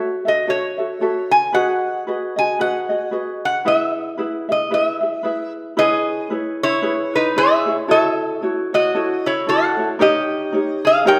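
Swung eighths give a lazy lilt to this languid, dreamy Hawaiian passage, where a light, thumb-plucked ukulele plays the accompaniment from the start and a nasal, metallic resonator slide guitar played with fingerpicks carries the melody from 0.3 seconds, both sitting up front in a reverberant recital hall as the harmony turns toward a minor shade at 5.8 seconds.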